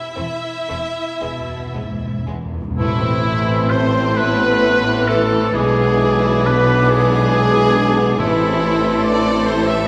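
Solemn and melancholic, this slow, rubato romantic orchestral passage in 6/8 and A minor opens with a rich, vibrato-laden violin melody over a second violin line, very quiet violas, distant cellos and a smooth, lush double bass section, while hard-mallet timpani play a fill from 1.2 s over an E chord. At 2.8 s the harmony settles on A minor, and woodwinds and brass enter together: a clear, roomy oboe stands out, joined by a very quiet close-miked clarinet, an airy flute high in the background, a mellow bassoon, tight French horns holding sustained chords and a warm, very quiet tuba underpinning the bass. The full ensemble sits in a wet scoring-stage reverb as the chords move through E7/B and back to A minor.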